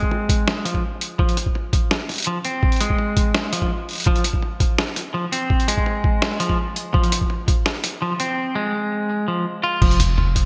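Spacious and tense, this half-time drum and bass excerpt builds over a single minor chord as a clean, picked semi-hollow electric guitar plays arpeggios through a low-pass filter and digital delay, set up front in a lush hall reverb with a bright 1980s-style digital sheen. A thumpy, pitched-down electronic kick and a gritty, tape-warm sampler-style kit with a medium-tuned snare, hi-hat, toms and crash cymbal, its high-passed pieces bathed in gated reverb, drive the build. At 9.8 s the harmony drops away and a deep, mellow 808-style sine bass enters, its long note decaying beneath a final kick.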